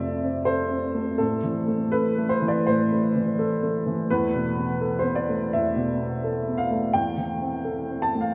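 A rubato 4/4 pulse carries this brief, intimate and reflective neoclassical minimalist passage, cut from a longer piece, in which a dark, woody upright piano plays solo, up front yet bathed in the long cathedral reverb of a vast, echoing space, moving through F, Am, Esus4 and Am/E across its 8.3 seconds.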